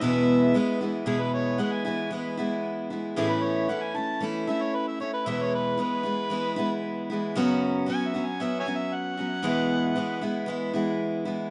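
Nostalgic and warm, this short rock cut taken from a longer piece moves at 115 BPM in a straight 4/4 in E major. A picked steel-string acoustic guitar sits up front with a bright, concert-style tone, carrying the accompaniment through the whole 11.5 seconds over a progression from E to A, back to E, through F#sus4 and home to E. An amplified, overdriven harmonica carries the melody with a gritty edge, light vibrato, scooped notes and tongue slaps, treated with analog delay and set lower in the mix than the guitar. After a brief opening, the harmonica takes a pop-style solo from 1.1 seconds and drops out at 10.5 seconds, leaving the guitar to finish alone. Light small-room reverb and a rough home-demo sound with a dull top end give the recording an intimate, unpolished character.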